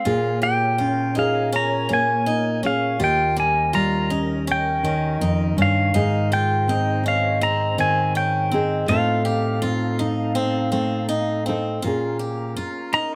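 A bright, twangy pedal steel guitar carries the melody with slide and volume swells over boxy, picked swing-style acoustic guitar arpeggios, joined almost at once by a full-bodied, fingerpicked nylon-string guitar up front and an airy, distant flute ensemble holding sustained chords with vibrato, in this peaceful, pastoral acoustic folk fragment at 82 BPM that moves through Bbm7, Eb7, Ab and F7/A under light reverb before the pedal steel takes a short solo at 11.8 seconds.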